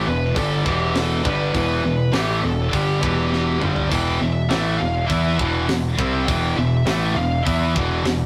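A straight 4/4 pulse at 102 BPM drives this short, aggressive and epic heavy metal excerpt in E minor, sitting on a single E minor chord throughout. A tight metal drum kit enters at 0.4 seconds with a high-tuned snare, tight kick, hi-hat, splash cymbal and toms, its sound mid-forward with a rolled-off top, and it breaks into a fill at 3.3 seconds. Two high-gain distorted guitars carry the riff in the low register: one bright and up front, the other scooped and set in the background. A growling picked electric bass, overdriven and upfront, anchors the low end with a direct, amped edge. Above them, a dark-toned high-gain lead guitar plays the melody between G4 and G5 until 7.5 seconds. The whole mix has a rough rehearsal-room character with warm saturation and a moderate studio reverb.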